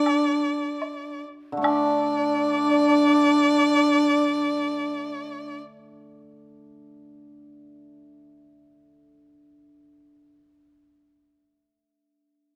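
In a rubato 4/4 that slows over the opening 1.6 seconds, this graceful, festive passage of Chinese traditional chamber music puts a focused, up-front erhu carrying the melody with vibrato and portamento alongside an airy, end-blown bamboo xiao playing a second line, both ending at 5.6 seconds, while a close woodblock sounds briefly at the start and a shimmering hammered dulcimer enters at 1.5 seconds with ringing accompaniment, set in a moderate stage reverb with detailed close miking.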